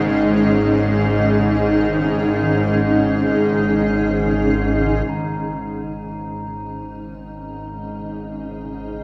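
In free time, this cavernous, ominous dark ambient drone sets a tense, detuned, string-like low drone with vibrato and a blurred, cloudy granular pad up front, while very quiet gamelan-type bossed gongs trace round, beating bronze arpeggios, inside a long cathedral reverb; at 5.1 s the drone and pad each begin a fade-in as an airy, ringing bronze singing bowl enters softly.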